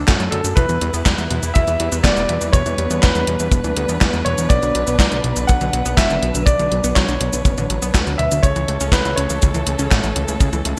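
Sunny and romantic, this italo disco excerpt moves at 122 BPM in a straight 4/4, with a clear concert grand piano carrying the melody over chords of D, Em, Bm and A. A fat, detuned sawtooth bass with a filter sweep anchors the low end, while a tight, dry kick and a sampler-style 80s drum machine sit up front, its cabasa, handclaps, hi-hat and gated-reverb snare ringing in a small room. Dark, bowed strings with vibrato and portamento hold sustained chords, and a warbling, lo-fi pluck with chorus, 12-bit grit and digital delay spins arpeggios in the background, all set in a bright 1980s-style digital production with moderate plate reverb.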